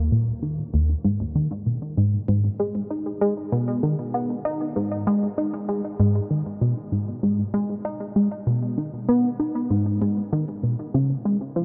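Bathed in a huge ambient reverb with a dulled top end, this expansive, hypnotic ambient excerpt in G# minor moves at 97 BPM in a straight 4/4, tuned slightly below standard pitch, with a tight, driving sequenced synth playing alone from 0.0 to 11.6 s: a detuned sawtooth with a fast-attack filter pluck, sustained and evolving, kept dark and up front, and coloured by chorus and tape echo.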